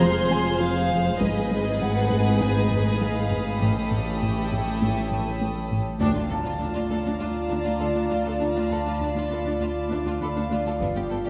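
Mysterious and eerie, this 100 BPM suspense cue, cut from a longer film score, lays close, sul tasto violins with a dark, soft-edged melody and a second floating violin line over woody viola, distant cello, very quiet double basses, a warbling lo-fi tape-like pad with chorus, a deep punchy sub bass drone and a brilliant grand piano texture in the background, while a high violin section adds a pure texture until 10.5 s. A funky, wave-folded analog bass riff plucks beneath the strings until 5.9 s, and very quiet taiko hits on heavy sticks sound in brief bursts from 1.2 s. The harmony settles into D minor at 6.0 s, marked by a band accent and a very quiet electronic impact, all set in a wet scoring-stage reverb.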